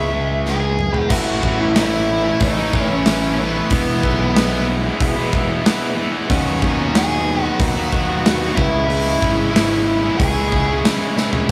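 A straight 4/4 pulse at 93 BPM drives this anthemic, restless quiet-loud alternative rock passage through C#m7, A, E, Badd9/D# and C#m: a clean, chorused twelve-string electric guitar picks arpeggios in the background until 1.1 seconds, while a huge arena drum kit with punchy kick, bright cymbals and a pumping hall sound enters at 0.5 seconds with fills. An up-front, double-tracked distorted electric guitar grinds out the riff over a growling overdriven bass, and a dark fuzz lead guitar carries the melody with tape echo until 10.8 seconds.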